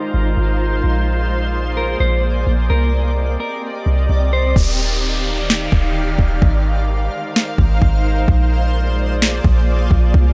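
A shimmering, ethereal ambient pad with granular, chorused reverb and a filter sweep opens this dreamy, floating half-time cloud-rap fragment, joined almost at once by a deep, boomy 808-style bass up front, while a dark, clean picked electric guitar adds a brief delayed melody from 1.8 seconds before a smooth, overdriven R&B drum kit with a soft kick and a sharp snare arrives at 4.6 seconds alongside an electronic downlifter.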